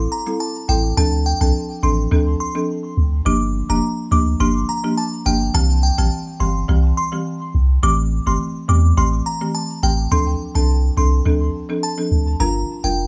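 A light, boxy small-room sound frames this tough, hypnotic dancehall excerpt in D minor at 105 BPM, where a deep, punchy sub bass with a pitch-drop attack sits up front beside a dry, woody folk marimba comping through Am7, Dm7, Gm7 and C, while a crystalline FM synth bell carries the high melody with chorus and tape echo, its notes decaying into a long release before a new section arrives at 10.1 seconds.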